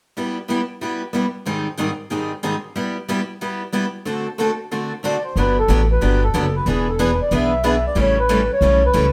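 Acoustic string swing in G major at 185 BPM, charming and lively, opens with two picked steel-string acoustic guitars comping through G6, Abmaj7 and D7, one bright and boxy with fresh strings and finger squeak up front, the other warm and concert-toned, before a reedy, mellow, close-miked accordion takes the melody at 5.1 seconds and a woody, thumpy pizzicato upright bass with gut strings enters at 5.4 seconds over Gmaj7, E7 and A7, the band playing live together in one room with moderate studio reverb in this short cut from a longer piece.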